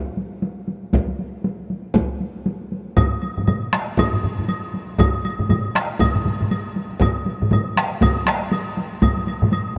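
Powerful and ceremonial, this short excerpt from a longer Japanese traditional piece features a taiko drum ensemble at 119 BPM in 4/4, with a 60% swing on the sixteenths. A solo taiko struck with hard sticks opens at 0.1 seconds, sounding as if in a small room, and a distant taiko ensemble on heavy sticks joins at 0.9 seconds, heard from across a large hall. At 3.0 seconds the texture thickens: a second solo taiko on heavy sticks comes in close and weighty, an up-front taiko ensemble with hard sticks adds a live-room punch, and a woody woodblock sounds from far back in a large space. A huge ambient reverb with a long 6.8-second tail hangs around the drums, giving the whole performance a vast, resonant sense of occasion. All the parts carry on together until just before the close, forming a dense, ritual wall of percussion.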